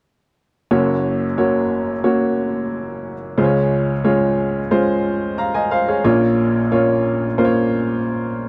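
Pop instrumental at 90 BPM in a straight 4/4, carrying a warm, hopeful mood across this short cut from a longer piece. A single upright piano provides the accompaniment from 0.7 to 8.5 seconds, spanning a broad range from deep bass notes up into the high treble. Its tone is clear and woody with a boxy character, sitting up front in the mix. The harmony moves from Gb to Db and settles on Bbm, giving the passage a gently uplifting lean. The sound is dry and close, like a 1970s-style studio recording, with only a light reverb around the instrument.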